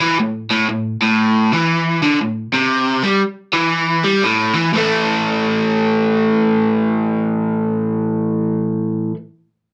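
A bright, overdriven, double-tracked electric guitar plays alone and up front through the full 9.2 seconds, picked in the range from A2 to A3 over an opening A5 chord, giving this raunchy, swaggering rock fragment at 119 BPM with swung eighth notes its strut, moving into a new section at 4.7 seconds inside a moderate club reverb.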